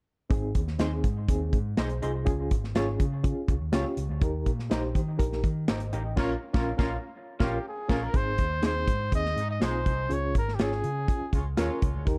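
A clear, up-front trumpet carries the melody in the closing stretch, arriving at 7.4 seconds with a light vibrato and a jazz-inflected touch. This is an uplifting, danceable slice of 1960s-style soul in a straight four, cut from a longer piece. The opening section rests on a reedy electric piano with a fast tremolo, an amped, warm picked bass and an acoustic drum kit recorded in a small room, with dark cymbals, a medium-tuned snare and a tight kick set close to the listener. A lo-fi guitar through a small old amp adds dark, slightly broken-up stabs with analog delay. A distant, roomy horn section enters at 6.2 seconds as a second line, joining a band accent that lasts until the second section begins at 8.1 seconds. Light reverb and a dark production tie the sound together.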